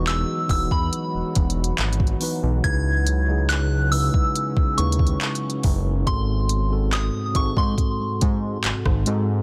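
Longing and sensual, this contemporary R&B cut moves at a slow 70 BPM in C# minor, drifting from Emaj9 to C#m9 and on to G#7b9. A soft, pure FM synth bell carries the high melody with chorus and delay over a mellow tine electric piano, while a deep, moody pad with chorus, built-in reverb and sidechain pumping sits in the background. Up front, a fat, saturated analog bass with a nasal filter pluck joins a smooth, tape-warm electronic drum kit of soft kick, hi-hat, handclaps and rim clicks, all in a dense, heavily limited modern mix with little reverb.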